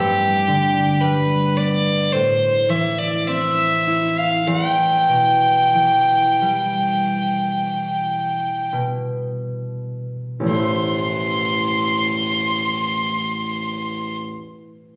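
Rubato and slow, drifting between 33 and 56 BPM in 4/4 and easing back over the first 10.5 seconds, this Celtic slow air in A minor carries a mournful, longing mood. A clear, biting fiddle sings an intense melody with light vibrato and an airy bow, while a bright, thumb-plucked concert harp rings beneath it, both sitting up front as the chords move from G through Am and Em before a new section settles on Am. A moderate scoring-stage reverb surrounds the pair, captured on a phone in the room with added compression, in this fragment cut from a longer piece.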